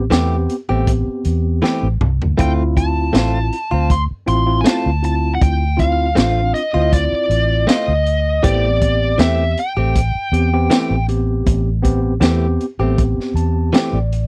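A biting, overdriven lead guitar carries a mournful melody from 2.4 to 11.1 seconds over a smoky, straight-eighth soul blues groove in A minor at 79 BPM, backed by a crunchy, gritty breakbeat drum kit with a high-tuned snare and tight kick, a dark, round, foam-muted fingered bass, bright compressed stabs from a direct-recorded clean electric guitar, and a tine electric piano that closes with a fill, in a dry, close 1970s-style studio recording.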